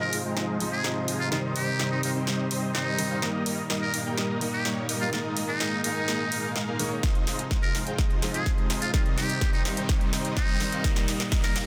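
Festival progressive house at 126 BPM in F minor, this emotional, powerful build-up is cut from a longer piece and moves through Fm7, Cm, Eb and Absus2 over a straight 4/4 pulse. A huge, detuned supersaw carries the riff with cassette-tape grit, sidechain pumping, a filter sweep and dub echo, while a buzzy, growling trumpet in a metal mute sings the solo melody with scooped notes and light vibrato, its phrases trailing into dub echo. Beneath them, an intimate grand piano with audible action noise and a reedy, gut-toned string section sit in the background, both pumping against the beat, the piano echoing and the strings passing through their own filter sweep. A big-room kit drives a drum fill throughout with a punchy, softly clipped snare and filtered hats, and a punchy, up-front electronic kick arrives at 7.0 s. A very quiet riser enters at 9.6 s as the build tightens, all framed by light small-room reverb and a dense, heavily limited master.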